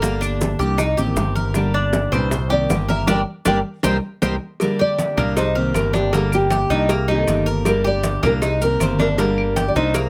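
The recording has close, detailed microphones and light reverb, giving this short cut from a longer Cuban son and guajira piece a sultry, warm feel in G minor at 157 BPM in a straight 4/4. A fingerpicked nylon-string guitar carries the melody with a woody, full-bodied classical tone and old strings, taking a solo through the opening 4.6 seconds, while the band hits an accent from 3.1 to 4.6 seconds before the second section begins. Beneath it, a jumbo steel-string acoustic guitar, also picked and full-bodied, plays accompaniment, and an up-front Cuban tres adds metallic arpeggios from its double strings, some of them octave-doubled. A growly, direct picked electric bass sits up front in the low register, and the harmony moves between Gm and Cm7. The percussion stays in the background: tight, high-tuned bongos and cowbell, very quiet low-tuned congas with a bright, thin skin struck with hard hands, grainy maracas, and woody claves entering at 0.2 seconds.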